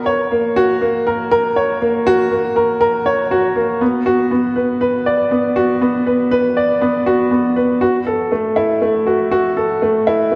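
Set in a wet concert-hall reverb, this short melancholic and moving electronica fragment in B minor at 120 BPM features a solo upright piano, clear, woody and intimate with audible action noise, placed up front from 0.1 to 10.4 seconds.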